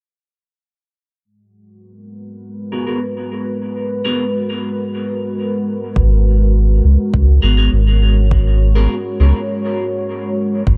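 Ambient dub with a deep, hazy mood, this excerpt rests on a single G#m9 chord in a straight 4/4. A deep, moody pad of detuned sawtooth and sine voices with a sub octave enters at 2.0 seconds, its slow attack and long release softened by chorus and its own reverb. Clean, picked stabs from a semi-hollow electric guitar sit lower in the mix from 2.7 seconds, colored by phaser, a low-pass filter and dub echo, while a filter sweep runs across the guitar through most of the passage. At 6.0 seconds a round analog bass, up front and sustained with a fast attack, arrives together with a soft electronic kick. The production is dark with little reverb on the whole, and a brief break closes the passage from 9.5 seconds.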